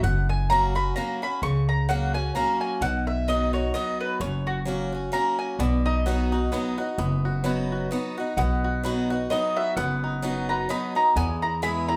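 A swinging bluegrass piece in 3/4 at 130 BPM, this joyful, virtuosic excerpt in B major has a bright, boxy picked acoustic guitar with audible finger squeak and a thumpy, woody upright bass played pizzicato, both up front under a mellow, double-strung mandolin melody. The mandolin drops out at 6.1 seconds and returns at 8.4 seconds, while a twangy banjo played with fingerpicks joins the melody at 5.6 seconds. The band plays live in one large studio room with moderate reverb, the chords moving from F# to B and settling on E at 11.2 seconds.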